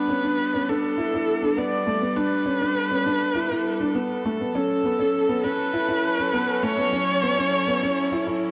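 Piano and strings electronica at 101 BPM, moving and intimate, cut from a longer piece and building throughout its 8.5 seconds over chords moving from Gadd9 to A6 at 4.5 seconds. Up front, a felt-muted upright piano plays a soft, boxy riff with audible action noise and a digital delay, while a single viola carries the expressive melody with vibrato and portamento. Behind them, a distant chamber string section holds reedy, gut-string chords, all set in a dark production with a wet echo chamber reverb and small room ambience.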